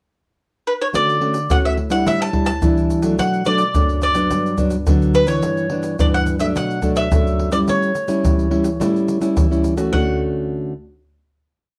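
A bright bowl-back mandolin carries a motif-based melody of sentence phrases on picked double strings from 0.7 seconds, over a small, fingerpicked nylon-string guitar playing thumb bass and syncopated plucked chords and close, dry percussion of tube shaker, pandeiro and tight surdo, in a festive, lively samba and choro piece that closes on a final chord at 9.9 seconds, coloured by moderate studio reverb and the warbling pitch drift of worn cassette tape.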